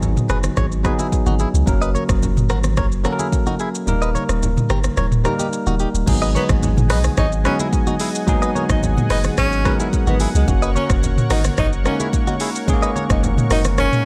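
A straight 4/4 afrobeats groove at 109 BPM drives this mellow, sultry fragment from a longer piece in G# minor. It rests on an electronic afro-pop kit with a deep kick, metallic hi-hats, rim clicks, shaker, toms and crash, plus a punchy sine sub bass with a pitch-drop attack, both sitting up front. Low-tuned acoustic congas played with soft hands stay in the background. A bell-like tine electric piano lays down chords from G#m7 through F# and D#, while a twangy, compressed clean electric guitar picks a bright riff touched with delay. The kick drops out from 3.9 to 6.1 seconds. After that, a smooth, detuned sawtooth pad with chorus enters at 6.1 seconds as the harmony returns to G#m7. At 6.4 seconds a breathy tenor saxophone takes a jazz-style solo with vibrato, scooped notes and delay, all set in a digital ambience.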